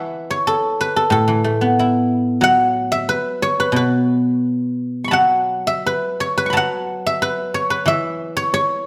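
A solo guzheng, played with fingerpicks and sitting up front, opens this serene, elegant 8.9-second fragment of Chinese traditional plucked-string music in the A gong mode, its ringing, silvery tone spanning A2 to C#6 at a loose, rubato 83-94 BPM in 2/4, set in the moderate reverb of a recital hall.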